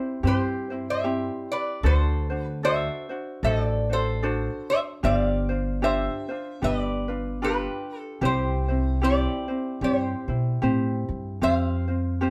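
A lap resonator guitar played with slide and fingerpicks carries the melody from the first moment, its metallic, nasal voice sitting up front, while a mellow, lightly fingerpicked ukulele plays beside it and a woody pizzicato upright bass joins at 0.2 seconds. This languid, relaxed Hawaiian piece moves at an easy 75 BPM in 4/4 with a gentle swing, drifting in C major through chords from C to D7, G7sus4 and G7 before settling back on C and landing on Fsus2 at 11.4 seconds. The trio sounds like a band playing live in one room, with moderate studio reverb lending a soft glow to this short cut from a longer piece.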